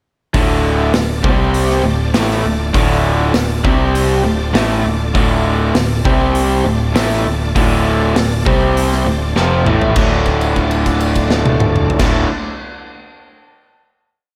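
A crunchy, up-front overdriven guitar drives this brooding classic rock piece with a power-chord riff, joined by a second overdriven guitar playing a power-chord riff in the background, a growly, punchy picked bass that doubles the riff, a big rock drum kit with boomy kick and bright cymbals, and a shouting tonewheel organ holding swelling chords through a slow rotary speaker, until a drum fill at 9.4 s leads to a final chord at 10.0 s that rings out in a lush hall reverb with an arena-sized sound.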